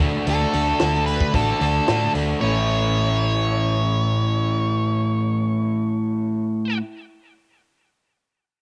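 A straight 4/4 pulse at 111 BPM drives this upbeat, jangly indie rock excerpt in A major, where a compact cocktail drum kit with a punchy kick and high-tuned snare plays only until 2.3 seconds beneath an up-front overdriven semi-hollow guitar riff and a round, dark hollow-body short-scale picked bass, while an octave-fuzz lead guitar enters at 0.3 seconds with a distorted, picked melody carrying tape echo, the dry home cassette recording moving from D to A at 2.4 seconds.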